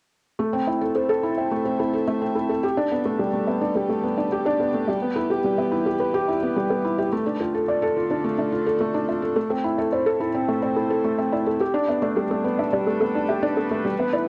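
Melancholic and cinematic, this electronica piece moves at 107 BPM in a straight 4/4 in A minor, cut from a longer work. A felt-muted upright piano sits up front playing a soft, intimate riff, its mellow tone carrying audible action noise and a touch of tape echo. Behind it, a rich chamber string section holds sustained chords with light vibrato and a reedy, gut-string, period-style colour, fading in from a distance over the full 14 seconds. A warbly, dusty pluck traces arpeggios in the background, a lo-fi blend of pulse, sawtooth and sine waves with a noise layer and wave-folding, shaped by a filter sweep, chorus and tape echo. The harmony cycles through Am, Gadd9, Em and Dm, all set in a moderate studio reverb with the hazy character of a home cassette recording.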